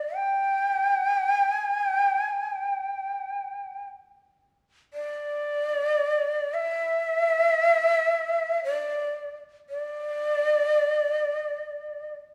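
In free time, this meditative, solitary piece of Japanese chamber music, cut from a longer work, features a lone breathy shakuhachi up front with a bamboo, end-blown tone, soft attack and vibrato, sounding between D5 and G5 from 0.0 to 12.1 seconds within a recital hall reverb and small room ambience.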